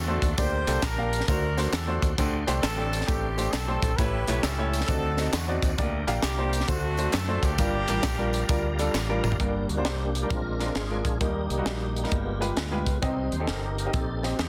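Uptempo gospel in G minor at 133 BPM, this short cut from a longer piece carries a soulful, solemn mood over a swung 4/4 groove. A clear horn section with jazz-style vibrato states the melody until 8.9 seconds, while a baby grand piano with a natural, short-sustained tone plays accompaniment and drops out at 14.4 seconds. A bright, punchy fingered electric bass sits up front beside a tight funk drum kit with a high-tuned snare and tight kick, joined in the background by tambourine and group handclaps that fall away near 9.3 seconds. The tonewheel organ holds full, lightly overdriven chords through a slow rotary speaker and chorus vibrato from the start. After a drum fill from 8.9 seconds, it takes a solo at 9.4 seconds as the harmony shifts from Gm through Bb7, Eb and G7b9 to Cm. Light reverb and small-room ambience frame a dense, heavily limited modern master.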